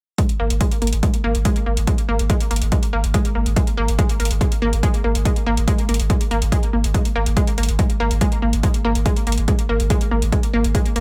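A straight 4/4 pulse at 142 BPM drives this intense, dark peak-time techno excerpt, built on a punchy, up-front electronic kick and metallic hi-hats, over a round, deep sine sub bass holding G#1 with overdrive, a low-pass filter and sidechain pumping. A lush, detuned sawtooth unison pluck plays a riff between G#3 and A#3 on a G#sus2 chord, its fast-attack, decaying notes coloured by cassette tape, digital delay and sidechain pumping. The mix is dry, with little reverb.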